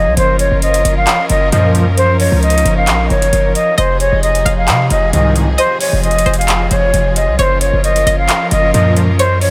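Trap-inflected hip hop at 133 BPM in a half-time 4/4 feel, this eerie, menacing excerpt is carried by an up-front concert flute whose pure, straight-toned melody sits between C5 and F5, softened by a low-pass filter and trailed by delay. Beneath it, a rich symphonic string section holds lush, bowed chords with smooth vibrato, moving from Gbmaj7 to Fm7 and back to Gbmaj7. A hard-hitting 808-style bass, punchy and heavy with a fast attack and decaying sine body, anchors the low end, while a booming analog drum machine enters at 0.2 seconds with handclaps and metallic hi-hats that carry the sound of a large room. Short stabs from a big, fat polysynth with a nasal, detuned, ring-modulated edge and chorus punctuate the groove, first at 1.5 seconds. From 3.8 seconds a very quiet, twangy resonator pluck with a filter sweep adds a second line in the flute's register, and light reverb wraps the whole mix.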